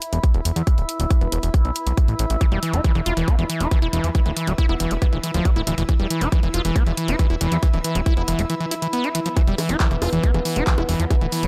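Set in a digital ambience, this cut from a longer psychedelic trance piece at 138 BPM feels psychedelic and alien. A tight, up-front electronic kick joins a small-room drum kit of bongos, handclaps and bright hats, under a fat, detuned sawtooth analog bass. From 2.4 s a squelchy, gritty acid bass riff enters with distortion, tape colour, sidechain pumping and dub echo. A sustained drone of moving overtones carries chorus and reverb, a faint, blurred granular cloud pad hangs above, and a juicy resonant blip pluck flickers in the background with phaser and echo, with a short break arriving at 8.5 s.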